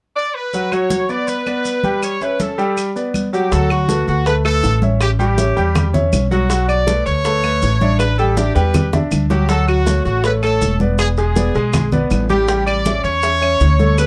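Congas with a thick-skinned, hard-hand attack and grainy, vintage-sounding maracas set a straight, danceable salsa groove from 0.5 s in this section of a longer piece, with woody claves joining at 0.7 s. Up front, a punchy horn section with light vibrato and a smooth top carries the joyful melody, while a clear, polished grand piano accompanies over chords moving from D through G and A7. At 3.5 s a dark, thumpy pizzicato upright bass with gut strings joins up front, with tight, high-tuned bongos sitting in the background, the whole captured with light reverb and close, detailed microphones.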